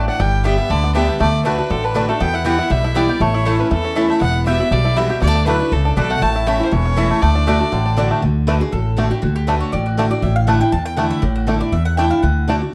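Bluegrass with a joyful, lively swing, this brief cut from a longer piece sets a boxy parlour guitar with audible finger squeak and a twangy banjo fingerpicking arpeggios over a thumpy, up-front gut-string upright bass, while a woody mandolin adds stabs. A biting fiddle with light vibrato and an airy bow carries the melody until 8.0 seconds, after which the mandolin takes a solo from 8.2 seconds to the close at 12.7 seconds. The production is dark with light reverb.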